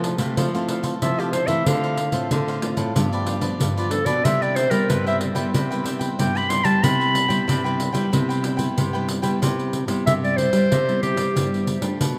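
Playful and lively, this samba and choro fragment moves at 93 BPM in a straight 4/4 in C major, with an up-front, clear clarinet carrying a classical-style solo melody through 9.4 seconds over chords of Fmaj7, Dm7, G7 and Cmaj7. Two warm, fingerpicked nylon-string guitars in classical style provide the accompaniment and the bass line, while a jingly pandeiro played with soft hands sits up front and a bright, crisp picked cavaquinho adds accompaniment until 9.4 seconds. The whole piece is bathed in a wet cathedral reverb that places it in a vast, echoing space, and the clarinet falls away at 11.6 seconds as the guitars and pandeiro carry on.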